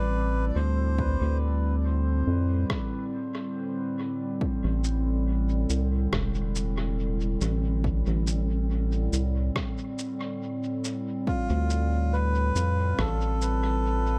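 Deep and spacious, this ambient dub fragment rests on a warbling, lo-fi tape-like pad holding sustained chords with chorus and built-in reverb, over a round, dark analog bass that sits up front. An overdriven, punchy electronic kick enters at 1.0 seconds, and a muffled, pitched-down rim click and shaker with dub echo joins at 2.7 seconds, both drum parts set in small room ambience within an echo-heavy mix. A reedy, breathy melodica with dub echo sounds briefly at the opening and returns at 11.3 seconds, as the harmony moves from Dm7 to Am7 and back to Dm7.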